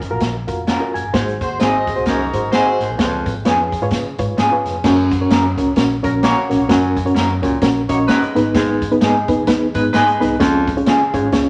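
A roomy, wet studio reverb surrounds this uptempo 1960s-style soul excerpt in F# major, swinging at 130 BPM with an uplifting, danceable feel. A reedy, worn electric piano with fast tremolo sits up front and opens with a short fill, over a round, foam-muted bass, a vintage drum kit with a punchy kick and dark cymbals, and a very quiet, jingly tambourine, while a slightly broken-up, lo-fi electric guitar adds spring-reverb stabs from 0.7 s. A smooth-topped baritone saxophone with scooped notes plays the riff from 1.1 s, and a warm horn section with light vibrato carries a second line that returns at 6.0 s.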